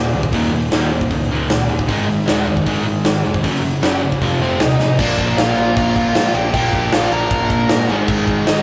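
A big, up-front rock drum kit with a punchy kick and bright cymbals drives this rowdy, energetic punk rock excerpt, coming in at 0.2 s and hitting a fill at 4.8 s. Behind it, a crunchy overdriven guitar, a bright distorted electric guitar and a double-tracked, compressed fuzz guitar grind out the riff over a growly, amped electric bass. At 4.4 s a biting lead guitar with overdrive and delay takes the melody, all set in a rough rehearsal-room sound with moderate stone room reverb and saturation.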